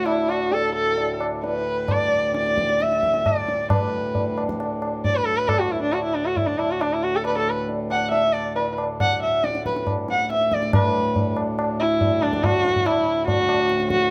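A bowed sarangi sings the melody up front with light vibrato and gliding portamento and the resonance of its sympathetic strings, over a reedy, breathing drone from a hand-pumped harmonium set in a boxy small room. The low-tuned tabla enters at 0.1 seconds with a short ring, carrying this serene, meditative Hindustani classical piece in raga Bhupali on D in 4/4, with a tempo that speeds up from 130 to 143 BPM. Close, detailed microphones and light reverb capture the playing, and a new section begins at 10.7 seconds in this extract cut from a longer performance.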